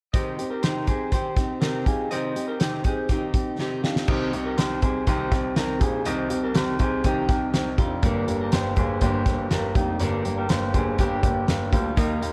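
A straight 4/4 pulse at 122 BPM drives this nostalgic, breezy jangly indie pop excerpt, which opens on a C minor chord, with a loose indie drum kit up front, its fat snare, punchy kick and dark cymbals breathing in a pumping studio room, and a drum fill from 3.6 to 4.1 seconds. A fingerpicked steel-string dreadnought acoustic guitar sits alongside a bright, twangy, slightly broken-up electric guitar playing arpeggios through a small old amp, and at 4.1 seconds a polished baby grand piano enters low to carry the bass. Light reverb and the worn, warbly pitch drift of old cassette tape color the whole recording, which is tuned slightly below standard pitch.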